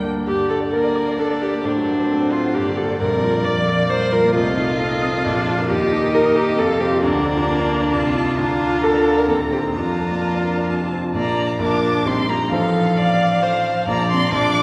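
A cathedral-like reverb with a long tail surrounds this short cut from a longer piece, and the whole ensemble sounds as if heard from further back in the room. It is a quick, graceful and spirited classical-period movement for piano quartet in triple metre, with all four players present from start to finish. The violin carries the melody with a warm, expressive tone, using vibrato and portamento, though it sits distant in the mix. Up front, the bright concert grand piano supplies a brilliant, open accompaniment with deep bass and long sustain, while the viola adds a smooth, even, full-bodied accompanying line with vibrato. The cello plays a rich second line with vibrato from the background, and at 11.2 s the music moves into a new section.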